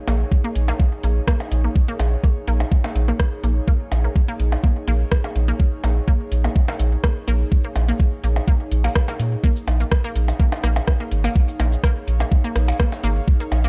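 Sparse and cool, this minimal techno in Bb minor at 125 BPM rides an overdriven, knocking electronic kick and a deep, round analog bass up front, joined by a garage drum kit of metallic hi-hats, rim click and shaker, roomy percussion blips with digital delay, a squelchy, resonant blip pluck riff on Bb3 with chorus and tape echo, and a breathy, detuned pad, with the pad, pluck and bass pumping against the beat in a dark production that reaches a drop at 9.4 s.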